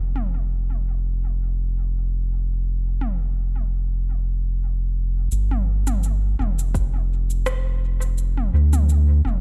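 A soft, round dub sub bass sits up front from the start, its deep triangle-and-square tone moving between F1 and D2 with a fast attack and long sustain in this hazy, meditative ambient dub cut from a longer piece at 84 BPM in 4/4 with a light 16th-note swing. An organic electronic drum kit of cabasa, rim click and toms enters at 0.2 s, overdriven and set back in studio reverb with dub echo, while the piece moves into a second section at 5.3 s. A single layered, overdriven electronic kick lands up front at 6.7 s, carrying the roomy ring of a large space, all within a digital ambience.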